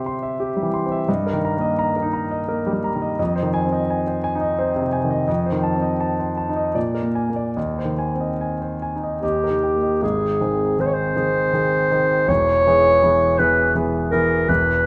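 A clear concert grand piano opens this tender, serene romantic duo for clarinet and piano, setting out an intimate accompaniment in a rubato triple metre. The piano's deep bass and long sustain fill a moderate recital hall, and audible action noise accompanies its polished tone. At 9.2 seconds a mellow clarinet enters with a classical-style solo melody in a narrow middle register, its soft attack giving it a roomy, distant quality even though it sits slightly above the piano in level. The harmony passes through Fm7, F7 and Bb7 before resting on Ab, then shifts to a brief E chord near the end of the passage. This is a short section of a longer piece, ending at 14.9 seconds as the second section gets under way.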